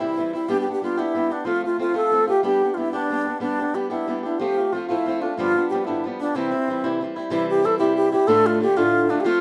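Rolling along in 6/8 at 123 dotted-quarter beats per minute with a straight feel, this lively, rollicking Celtic folk fragment is cut from a longer piece and sits in C major. A bright alto flute carries the melody from start to finish, airy and up front, with vibrato, a crisp attack and lifted highs, though it sounds a little unsteady. Beneath it, a fingerpicked swing-style acoustic guitar plays the accompaniment throughout, its tone warm and boxy and just as close in the mix. The harmony moves between G and F before settling through G7 onto C, and a new section begins at 7.3 seconds, touching D minor at 8.3 seconds. A moderate studio reverb gives the pair a modest sense of room around them.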